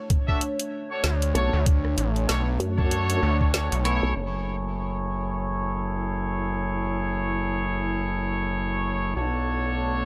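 A warbling, lo-fi pad in the background opens this playful, funky glitch hop excerpt in F# minor at 96 BPM, with a 16th-note swing, its detuned chords on Bm9 softened by chorus and sidechain pumping. A pitched-down, thumpy electronic kick and a small-room drum kit with a woody snare and bright hats drive the first few seconds, while punchy horn stabs run through tape echo, a gritty, oscillator-synced bass enters at 1.0 s, and a nasal, vowel-sweep wobble bass joins briefly. By 4.2 s the drums have dropped out, and the harmony moves to F#m9 as filter sweeps move across both the horns and the pad over the tube-saturated bass in a dry, up-front mix.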